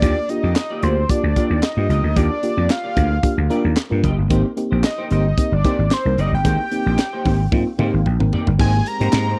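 Recorded dry and close in a 1970s-style studio, this feel-good, smooth slice of early-eighties boogie funk at 112 BPM rides a growly, punchy slap bass and a tight funk kit with a high-tuned snare, handclaps and crash cymbal, while a fat, mellow analog lead with phaser, vibrato and slapback echo carries the melody over a dark, tremolo-laden FM electric piano and a clean, picked semi-hollow guitar riff with analog chorus sitting in the background, moving from Ebmaj9 to Abmaj9 before a drum fill and electric piano fill at 7.5 seconds give way to a very quiet, lush, warbling unison pad entering at 8.6 seconds.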